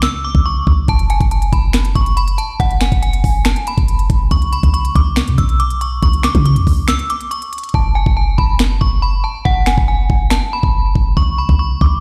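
Trap hip hop, dark and brooding, at 140 BPM in a half-time feel and F# minor, cut from a longer piece, where a metallic, inharmonic FM bell with chorus, phaser, low-pass filter and digital delay rings out a high, vintage-toned melody over a deep, boomy sine 808-style bass and an up-front electronic trap kit of knocking kick, sharp snare, finger snaps and crisp hi-hats, with breaks at 0.0 and 6.9 seconds, the hi-hats muted from 7.7 seconds, chords of C#m and F#madd11, and the mix heard through a big sound system in a bare stone room.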